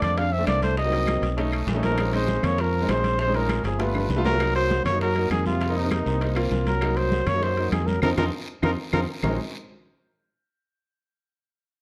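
A mellow, close-miked trumpet leads this sultry, fiery Afro-Cuban jazz clip at 198 BPM in Bb minor, singing up front with vibrato and scooped notes while a veiled, bucket-muted trombone plays a second line, distant and roomy in the background. A polished grand piano and a round, up-front fingered electric bass carry the harmony through rich extended chords, over bright damped congas, ringing metal-shelled timbales, woody claves, a raspy guiro, and tight, saturated bongos that slip in very quietly at 0.2 s. Drum fills at 3.6 s and 8.3 s mark the phrase turns, with a full band accent and a brief piano fill closing out the second section, all in a dark, warm production with moderate large-studio reverb.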